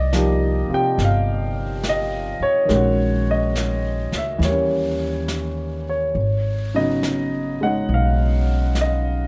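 A clear, present grand piano with long sustain provides accompaniment in this intimate, tender jazz ballad excerpt at 70 BPM with a gentle swing, joined by a woody, dark pizzicato upright bass and a vintage brush kit of snare and hi-hat that enters at 0.1 seconds, all in a dark production with light reverb as the chords move from Cm7 through Gb13/Bb and Eb7b9 to Abm7.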